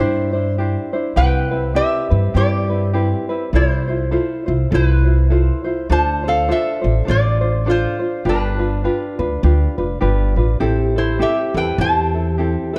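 A lap resonator guitar, tenor ukulele and upright bass open this relaxed, dreamy Hawaiian piece together, moving at 102 BPM in 4/4 with a gentle swing on the eighth notes in C major. Up front, the resonator guitar carries the melody with fingerpicks and slide, its tone mellow yet nasal and metallic. The ukulele plays a bright, light accompaniment, plucked with the thumb, while the pizzicato upright bass, strung with steel, gives a woody, thumpy foundation. The chords drift from Cadd9 through Cmaj7, Fmaj7/C, Dm7 and G7, and when the harmony reaches Am7 at 10.6 seconds, a vibraphone played with medium mallets enters in the background, ringing smoothly with a slow motor vibrato. A moderate recital hall reverb and a dark, warm production surround this 12.8-second fragment of a longer piece.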